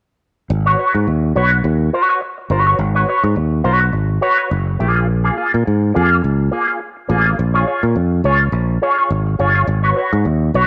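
A lightly swung sixteenth-note groove in 4/4 drives this glamorous disco excerpt, moving from G#m7 to A#m7 and back to G#m7 at 9.7 seconds. Up front, a bright, clean, twangy electric guitar with an envelope filter plays picked accompaniment colored by wah and vibrato. Beside it, a growly, punchy fingered electric bass sounds direct and amped, and a moderate echo-chamber reverb lends a digital ambience to the whole.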